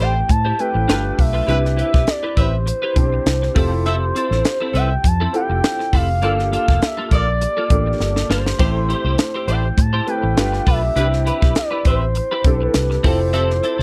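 Breezy and upbeat, this short slice of polished 1980s jazz-funk pop swings lightly over a dry, close studio sound, with a crisp fusion drum kit (punchy kick, high-tuned snare, dark cymbals) and a round, foam-muted fingered electric bass sitting up front. A smooth, warbling portamento lead with chorus and slapback echo carries the melody while a mellow, tight horn section plays a second line beneath it, and a concert grand piano and a clean, hollow-bodied semi-hollow electric guitar, both treated with ensemble chorus, fill in accompaniment and riff over chords moving from Am7 through G7, Cmaj7, Fmaj7 and Gm9. A drum fill at 8.0 seconds leads back into the Am7 turn of the progression.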